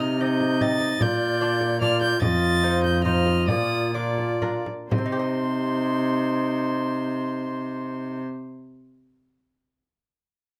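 Rustic and courtly, this short cut from a longer renaissance-style consort dance in triple metre sets a gut-strung violin melody with a reedy tone above a smooth viola second line, a clear trombone and a bright, fingerpicked lute with doubled strings as accompaniment, and a nasal cello bass that sits up front, while a small frame drum struck with hard hands plays from 0.4 to 5.1 seconds, the pace slowing from 1.6 to 4.9 seconds before a second section begins, all in a close, detailed sound with light reverb.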